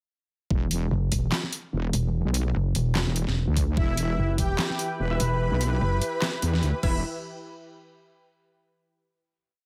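A heavy, saturated wobble bass and an overdriven, knocking electronic kick open this menacing, aggressive half-time dubstep drop at 0.5 s. They are soon joined by an up-front drum kit of deep snare, handclaps, bright closed hi-hats and crash, and by a pulsing, detuned pluck wobble bass, with both basses shifting their wobble speed through modulated phrases. From 3.8 s a smooth supersaw riff in octaves floats over a lush, warbling pad with vintage 12-bit grit and sidechain pumping; at 5.1 s bold, punchy orchestra-hit-like stabs in power voicing add sparse chords coloured by phaser and tape echo, before the piece ends on a final hit within a digital ambience.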